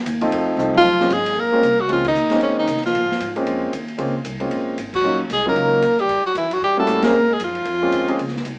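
A clear, breathy tenor saxophone with vibrato carries the melody up front from 0.8 s in this moody, swinging small-group jazz cut, shadowed in the background by a mellow, whispered trombone line with a soft attack. A warm grand piano with deep bass comps prominently over a woody, growly pizzicato upright bass, while an acoustic kit with dark cymbals, a boomy kick and a rolled-off top opens with a fill at 0.6 s and joins the band in accents such as the one at 2.0 s. The players sound live in one room with moderate studio reverb and a small-speaker character, moving from Bbm7 through Ebm7 and Edim7 back to Bbm7.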